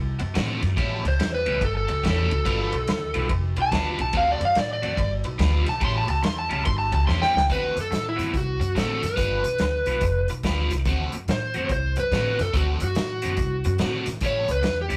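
A rough, tube-saturated rehearsal-room sound with a moderate studio reverb carries this gritty, soulful electric blues shuffle, cut from a longer piece, where a woody pizzicato upright bass and a vintage drum kit with a punchy kick, dark cymbals and a pumping small-room tone support a biting overdriven guitar riff colored by phaser, while an up-front overdriven slide guitar takes the melody from 1.1 seconds and the drums drop in a fill at 7.1 seconds before the second half.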